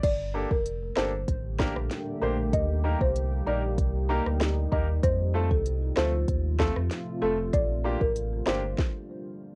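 Up-front electronic afro-pop drums with a deep kick, sharp snare and smooth hats drive this sultry, hypnotic dancehall excerpt, joined by a full sine-and-triangle sub bass, a woody, rustic marimba melody through analog delay, a clear, polished grand piano accompaniment entering at 0.3 seconds, and a moody, detuned sawtooth pad with chorus and sidechain pumping from 0.9 seconds, while the drums, marimba, piano and pad carry a cassette-tape colour in a light home-recorded room before a stop at 8.8 seconds.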